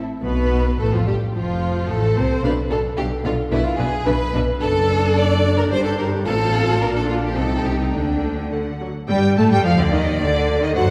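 A viola section opens this stormy, dramatic classical-period movement for string orchestra alone at 0.0 seconds, its bowed lines full-bodied with vibrato, expressive portamento and studio polish. At 0.2 seconds the rest of the orchestra joins: a violin section carries the melody from a recessed, focused place in the background with a smooth top, while a second violin section plays a close, up-front, expressive second line. Underneath, a clear, even cello section sounds distant, and a lush double bass section sits up front with its own focused tone. The quick two-beat pulse is handled with rubato, and the harmony moves restlessly through chords such as G9, Bm7b5 and Cm before settling on D. At 9.1 seconds a new section begins on Gsus2 and pushes through Dm to D7, and the passage breaks off as part of a longer piece, heard from further back in a resonant scoring-stage reverb.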